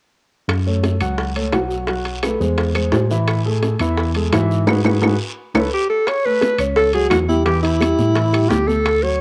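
A straight four-beat Afro-Cuban jazz groove opens at 0.5 seconds on tight, hard-handed bongos, woody claves, a raspy guiro and ringing metal-shelled timbales, with a clean tine electric piano holding down the bass line up front and a deep-bottomed concert grand comping beneath from 0.7 seconds. During a band accent, a breathy alto saxophone enters at 5.7 seconds with a soloist's subtone, light vibrato and scooped notes, and bright, damped congas join at 6.1 seconds. The sultry, sophisticated mood carries a cassette-tape haze on the piano and saxophone, all set in light reverb as a homespun fragment of a longer piece.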